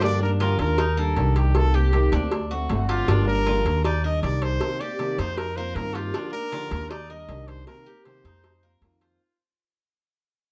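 Latin Cuban son and guajira with a sultry mood, where a distant, roomy solo trumpet with vibrato and plate reverb carries the melody over a boxy, fingerpicked old ladder-braced acoustic guitar, metallic double-strung Cuban tres arpeggios, a woody, thumpy pizzicato upright bass sitting up front and a round, low-tuned cowbell, all in a dark, warm production that fades out from 3.1 to 9.2 seconds.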